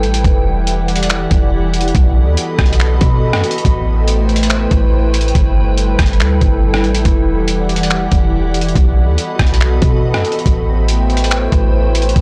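A glassy, warbling FM pad with ensemble chorus, built-in reverb and sidechain pumping holds slow-blooming sustained chords over a deep, boomy sine 808 bass and a gritty, pitched-down sampler drum kit of thumpy kick, finger snaps, hi-hat and rim click, all through 12.2 seconds of ethereal, hazy cloud-rap in E minor at 141 BPM in a half-time feel, cycling Em7, B7, Am7 and G6 in a dry, blown-out, overdriven mix cut from a longer piece.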